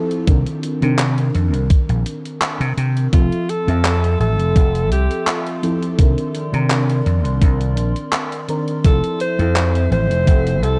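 Vaporwave at 84 BPM in F major, this dreamy, faded excerpt from a longer piece sits in a dark digital ambience with the hazy character of cassette tape. A mellow FM electric piano opens the texture with soft, round chords treated with phaser, analog chorus and analog delay, while a gated 80s digital drum machine adds handclaps and hi-hat bathed in gated reverb. From 0.3 seconds a thumpy electronic kick drum and a punchy, amped vintage slap bass sit up front, anchoring the slow alternation between Cm9 and Fmaj7. At 3.1 seconds a clear alto saxophone takes the melody in jazz style, with vibrato and scooped notes trailed by tape echo. Shortly after, a warbly, lo-fi pad drifts in behind it with slow-attack sustained chords, chorus and a gritty 12-bit sampler sheen, deepening the nostalgic, lightly swung mood.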